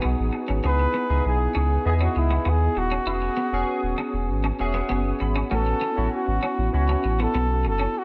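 Pop at 98 BPM in a straight 4/4, this short cut from a longer piece feels nocturnal and bittersweet, moving through G#m7, C#m7, E6 and A6 in light reverb. A deep, round sub bass sits up front beneath a bright, barky tine electric piano with ensemble chorus, while a clean, picked semi-hollow electric guitar plays a quieter riff through analog chorus. A breathy, whispered flugelhorn carries the intimate melody with vibrato from 0.7 seconds, and the electric piano adds a fill between 4.3 and 5.5 seconds.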